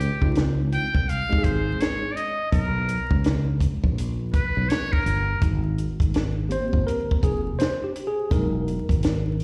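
A buzzy, breathy metal-muted trumpet whispers an intimate solo through plate reverb and slapback echo until 5.4 seconds in this smooth, relaxed jazz-hop cut from a longer piece at 83 BPM with a swung 16th-note feel in Ab major, over a growly fretless electric bass, a tight cocktail drum kit with a high-tuned snare and a punchy kick, and a worn, slightly out-of-tune tine electric piano that takes the lead from 6.5 seconds, all heard as a live gig through the venue's PA with recital-hall reverb and vinyl crackle.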